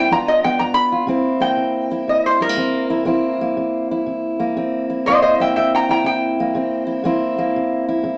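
A lap resonator guitar takes a solo over the first 1.1 seconds, its bright, metallic, nasal slide melody played with a steel bar and fingerpicks, while a fingerpicked jumbo steel-string acoustic guitar plays warm accompaniment marked by finger squeak from the very start as the harmony moves from G7 to C7. This laid-back, rollicking acoustic country blues swings at 121 BPM in C mixolydian, with both guitars up front yet heard from further back in the room through a small-speaker sound and a wet studio reverb. The resonator melody stops at 7.5 seconds, and the accompaniment carries on until this cut from a longer piece ends at 8.2 seconds.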